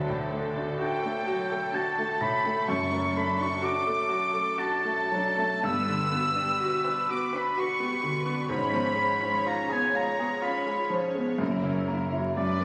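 A free, rubato triple metre carries this tragic, passionate classical passage, cut from a longer work. An intimate baby grand piano sits up front with the melody, its action noise audible, while a rich, distant violin section shares the tune in the background with smooth vibrato. Beneath them a dark viola section fills in the accompaniment with expressive portamento, and lush cello and double bass sections, the cellos focused and the basses soft in attack, anchor the low end. From 0.8 s a clear oboe in classical style sings a high second line, joined by a close, warm violin section. The harmony moves from D through D/F#, Gmaj7 and C#7/G#, arriving on F#7, where very quiet timpani with calf heads and medium mallets sound at 11.4 s. A concert hall reverb surrounds the ensemble, yet the whole carries the colouring of a phone recording in the room, with vinyl crackle and compression.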